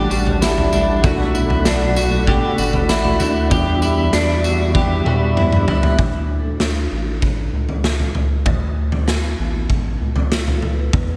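Dream pop at 97 BPM in D major, this dreamy, ethereal excerpt opens with a twangy direct-recorded electric guitar under harmonic tremolo, lush chorus and slapback echo, a mellow, flute-like tonewheel organ turning through a slow rotary speaker, and a second clean guitar picking bright arpeggios with subtle chorus and delay, all three dropping out at 6.0 seconds as the chords move from A7sus4 through Bm7 and Em7 to Dmaj7. Underneath, a round, deep analog bass and a raw, gritty, saturated garage drum kit with a punchy kick, medium-tuned snare, tambourine and toms carry on to the end, the kit sitting up front in a pumping stone room and rolling into a fill at 4.8 seconds. A ringing, metallic vibraphone with hard mallets, fast motor vibrato and delay hangs in the background, and a lush hall reverb gives the mix a big arena sound.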